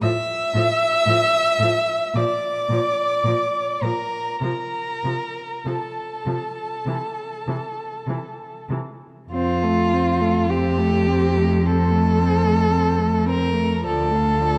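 Classical slow romantic movement for string quartet in F major, lyrical and warm, moving at 48-57 BPM in 4/4 with a rubato feel across this 14.6-second fragment cut from a longer piece. A first violin sings the melody with vibrato, soft attacks and expressive portamento while a second violin, placed up front, carries a supporting line in the same sliding, vibrato-rich manner. Beneath them a focused viola with a smooth top fills in accompaniment and a rich, up-front cello anchors the bass, all bowed by single players in a dark production with moderate concert hall reverb, and the harmony shifts to a new section at 9.3 seconds.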